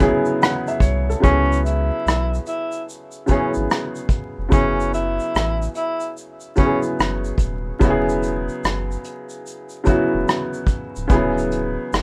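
Lo-fi hip hop at 73 BPM with a swung 16th-note feel, melancholic and reflective, cut from a longer piece and moving through F#m9, C#m7, F#7sus2, E and Dmaj7 over a deep, round sub bass and an up-front brush kit of punchy kick, hi-hat, rim click and shaker, its rolled-off top carrying 12-bit sampler grit. A felt-muted upright piano sits close and intimate, mellow and filtered, with audible action noise and short sustain. From 1.2 to 6.8 seconds a breathy tenor saxophone plays a whispered, subtone jazz solo with vibrato and scooped notes, all wrapped in light reverb, vinyl crackle and a rough home-demo mix.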